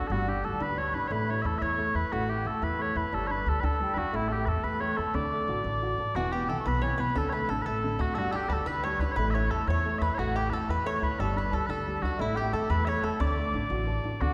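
Celtic folk jig in D major at 119 BPM in 6/8, bright and lively, cut from a longer piece and bathed in the lush reverb of a church or concert hall. Sweet, mellow small bagpipes carry the melody up front, while a pure, wooden baroque flute with vibrato sings a second line in the background, and a woody, slightly detuned upright piano and a thumpy pizzicato upright bass with steel strings drive the accompaniment. At 6.2 s, as the opening section repeats, a twangy fingerpicked bluegrass banjo joins with a percussive second line until 13.8 s.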